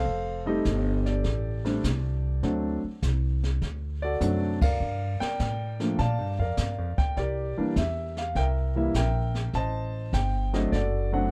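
Jazz piano trio in a relaxed, sophisticated swing, where an intimate concert grand with audible action noise, long sustain and plate reverb carries the melody up front over a woody, thumpy pizzicato upright bass on gut strings, while a distant, roomy brush kit with dark cymbals, a high-tuned snare and a punchy kick adds a fill from about 4.2 to 4.8 seconds around a band accent at 4.5 seconds, all in a dark, lightly reverberant production cut from a longer piece.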